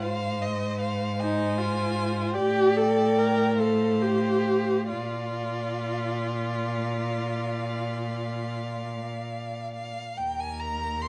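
All four bowed strings of a string quartet begin together in this serene, slow romantic classical excerpt in rubato 12/8 at 45-52 BPM, with a focused, vibrato-rich first violin singing the high melody over a soft-attacked second violin line with expressive portamento, an up-front viola accompaniment with a smooth top that drops out at 8.8 s, and a rich, sliding cello bass, all set in a dark production with a moderate stone-room reverb as the harmony settles onto Eb at 10.2 s.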